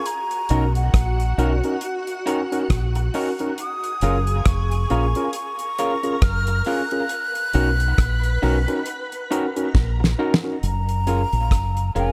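A breathy, hollow jazz flute with tape echo carries the melody over a silky string machine with ensemble chorus, and within the first second a damped 70s drum kit with a fat snare, a deep, round fingered dub bass, a barky, lightly overdriven tine electric piano and dark, lo-fi electric guitar stabs through spring reverb join in, forming a tender, smooth, swung lovers rock reggae groove in a small room until a drum fill at 9.7 seconds, after which the strings fall away at 10.6 seconds.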